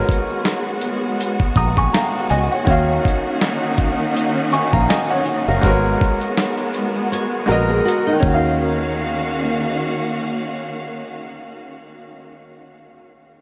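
A bright, woody upright piano, filtered and up front, carries the accompaniment in this reflective, nostalgic lo-fi hip hop excerpt at 81 BPM in Eb minor, swung over Abm11 and Ebm9 chords, with lush, bowed strings carrying sustained chords, a round, foam-muted fingered bass, a gritty, overdriven sampler-style drum kit with thumpy kick and handclaps, and a grainy tube shaker in the background, all soaked in a dreamy ambient reverb as a fingerpicked nylon-string guitar drifts in at 7.1 seconds under a drum fill before the drums stop at 8.4 seconds.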